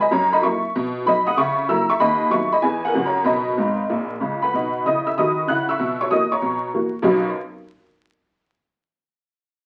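A swung 4/4 at a brisk 190 BPM drives this playful, exuberant stride-jazz fragment in B major, where a detuned, jangly honky-tonk upright piano plays solo up front, tosses in a quick fill at 3.6 s and stops at 7.3 s, all heard through a short studio reverb and the crackle of a very old 78 rpm record.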